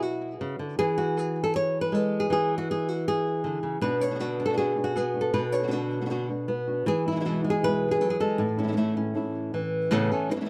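A fingerpicked acoustic flamenco guitar opens the fragment alone, carrying a festive, fiery melody up front in the mix, its tone touched by tape echo and the occasional finger squeak. At 3.8 seconds a second flamenco guitar joins underneath, thumb-plucking short stabs in a lower register, with a warm acoustic body and its own audible finger squeaks. The harmony moves from B minor to E, returns to B minor and E, then settles on A and an A add9 chord near 9.9 seconds. The pulse is straight, in common time at 158 BPM. The sound is dry and close, like a 1970s studio recording, and the passage is cut from a longer piece, with the stabs ringing on briefly after the melody stops at 10.3 seconds.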